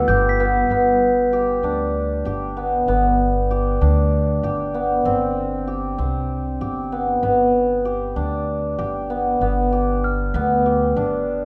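Set in a straight, uneven 7/8, this hopeful, shimmering stretch of contemporary chamber music is cut from a longer piece. Up front, a hammered cimbalom spins ringing arpeggios over a woody pizzicato upright bass, while a very quiet, glassy and ethereal pad with ensemble chorus holds a sustained chord only until 0.7 seconds. A soft, bell-like glockenspiel played with rubber mallets adds texture at the start and returns at 10.0 seconds, all within a moderate concert hall reverb.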